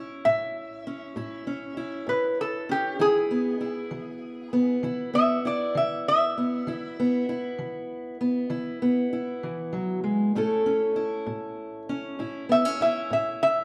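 A boxy parlour-style steel-string acoustic guitar, fingerpicked on fresh strings, opens this gritty, soulful slice of acoustic country blues, with a lap resonator guitar joining at 0.3 s. The pace is slow, around 65 BPM counted in dotted quarters, with a straight 12/8 feel in E major. The fingerpicked guitar holds down the accompaniment across its lower and middle range, moving from A to E at 3.0 s and back to A at 10.3 s. Above it, the resonator carries the melody with a slide and fingerpicks, its metallic, nasal tone softened into a mellow voice that sits up front alongside the guitar. The two players sound as if they share one room, bathed in a large, wet studio reverb, and the passage is cut from a longer piece.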